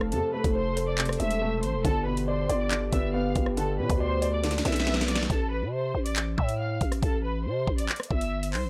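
Drill hip hop at 139 BPM in a half-time 4/4 feel, this tense, menacing excerpt opens with a soft, felt-muted upright piano with audible action noise and short sustain playing filtered accompaniment over mellow French horn chords in the background and an F to G change, while a lush, bowed violin section with expressive vibrato carries the filtered melody. A growling, buzzy 808 bass and an up-front electronic drum kit with knocking kick, sharp snare, metallic hats, claps and rim clicks drive beneath. A drum fill at 4.4 s leads to the piano and horns stopping at 5.3 s, and the whole sits in a dry, gritty hardware recording with transformer saturation.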